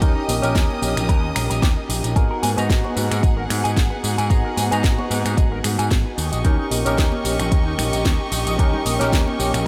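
Nu-disco in G# minor at 112 BPM, this sensual, groovy fragment of a longer piece rides a lightly swung 16th-note feel in 4/4. A punchy, up-front electronic kick anchors the groove alongside a house kit of finger snaps, metallic hi-hats, a cracking snare and tambourine, while very quiet, high-tuned congas played with soft hands ring in from 0.3 seconds. An overdriven picked electric bass sits prominently in the low register, and a barky tine electric piano supplies phased, pumping accompaniment with a diffuse ambient delay. A rich studio violin section holds bowed, vibrato-laden chords with a sidechained pump, and a twangy guitar through an envelope filter plays a clean riff in the background, touched with subtle chorus and delay. The harmony moves from D#7 to G#m7 at 2.2 seconds and back to D#7 at 6.2 seconds, all set in a dreamy mix soaked in cathedral-like reverb.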